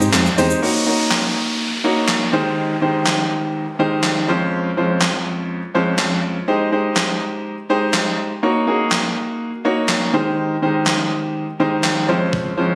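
Carefree and euphoric, this short dance-pop cut rides a straight, steady pulse built on lush major-seventh and minor-seventh harmony. It opens with a brief break where a very quiet, detuned supersaw swell and a hollow, organ-like FM bass sound together for a fraction of a second before dropping away. A clear, natural grand piano sits up front as the main accompaniment throughout, its chords breathing with a sidechain pumping effect. An overdriven 80s digital drum machine drives the groove with a thumpy kick, handclaps, hi-hat, shaker and a snare drenched in gated reverb, sounding as if re-recorded in a small room. An electronic downlifter sweeps through from 0.6 to 4.5 seconds, and the whole mix carries a light studio reverb and a compressed, slightly roomy character, like a phone capture of the playback.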